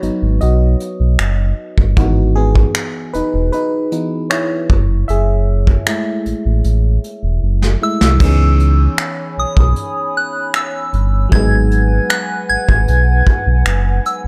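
A studio reverb wraps this sensual, longing slice of contemporary R&B, cut from a longer piece. A glassy FM electric piano with a bell-like attack and a warbling, vintage chorus carries the chords and takes the spotlight through the opening section, moving through G#m7, Emaj13 and F#m9. Beneath it, a deep, full sine sub bass with an added octave sits up front, while a soft brush kit, roomy yet close in the mix, keeps a straight pulse with a tight kick, medium-tuned snare, hi-hat, finger snaps and crash, closing the first section with a fill at 7.4 seconds. A pure, gentle synth bell enters high at 7.8 seconds, its tone shimmering through chorus, phaser and digital delay. A hollow, flute-like pad with a slow, mellow swell of detuned waves joins at 8.6 seconds under the second section's C#m9 and G#m7 chords.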